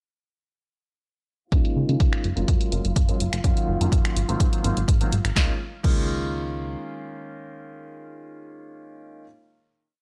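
The up-front electronic kick, thumping four-on-the-floor, drives this short, feel-good filtered disco house piece at 125 BPM in Db major, alongside a punchy analog drum machine's snappy snare, finger snaps, hats and crash, a plucky, funky octave-jumping analog bass, dotted-rhythm rootless chords on a phased, pumping concert grand piano, a very quiet lush string section with vibrato and portamento, and, from 3.4 s, a distant, barely audible tube shaker. All of them ride a filter-swept breakdown from 1.5 s into a final Db6 chord at 5.4 s, on which the piano rings out alone from 6.8 s.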